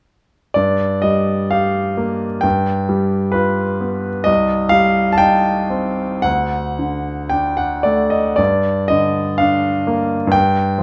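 In a slow, flexible 2/4 at around 55-66 BPM, the pulse stretches and yields with a free rubato that gives this romantic character piece a brooding, stormy air. A solo concert grand piano carries everything, entering at 0.5 s and sounding through to 10.8 s across a span from C2 to A5. Its tone is brilliant and polished, with a deep bass anchoring the darker moods and the instrument sitting present and up front in the mix. The harmony moves from G minor through G7 and C minor to D before settling back on G minor, keeping the music in a shadowed minor world. A moderate large-studio reverb with a 0.8 s decay adds space around the piano, and the tuning sits slightly low at A4 = 438 Hz in this short cut from a longer work.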